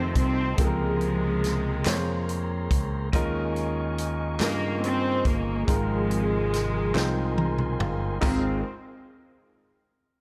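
A studio sound with light reverb frames this slow, uplifting and hopeful gospel passage in 6/8 at 47 BPM in Ab major, moving from F7 through Bbm9/Db and Eb9sus4 to Ab69. Up-front, close and intimate bowed strings carry the melody with soft attack, light vibrato and slapback echo. They sit over a natural grand piano, a mellow, flute-like tonewheel organ holding chords with key click and fast rotary speaker, and a direct, warm fingered electric bass. An acoustic country drum kit with a punchy kick enters at 0.2 s, crisp vintage handclaps join in the background at 1.9 s, and both drums and piano play fills from 7.0 s.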